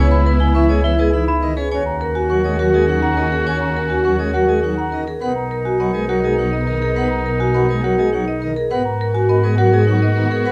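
A woody, bowed double bass section sits up front beneath ringing vibraphone arpeggios with medium motor vibrato in this hypnotic, propulsive minimalist classical excerpt, moving at 103 BPM in 3/4 in B major through chords such as C#m7, D#m7, Bmaj7 and G#m9. Hard-mallet marimba carries a percussive, boxy melody while a clear, distant oboe adds a second line and a brilliant plenum pipe organ with chiff supplies accompaniment. Bell-like celesta arpeggios and a lush string section holding sustained chords in the background complete the dark production, set in moderate large-studio reverb.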